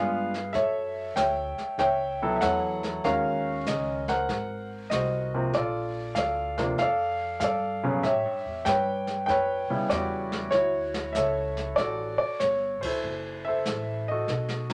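This swinging, playful jazz piano trio excerpt opens with a concert grand piano carrying the melody over a pizzicato upright bass, with a brushed drum kit joining at 0.3 seconds. The tempo sits at 96 BPM in 4/4 with swung eighth notes, and the trio is tuned slightly low, to A4 = 437 Hz. The piano is intimate and up front, with deep bass, a natural tone and audible action noise, and it is the loudest part. The woody, growly steel-strung bass and the drums sit further back. The kit, played with brushes and made up of snare, hi-hat, ride and kick, has an airy, polished small-room sound with dark cymbals, a medium-tuned snare and a boomy kick. The harmony moves through chords such as F#m7, G#9, Bbmaj7 and Dmaj9, and the band hits an accent at 12.7 seconds before a drum fill at 14.3 seconds closes the clip, all in light reverb.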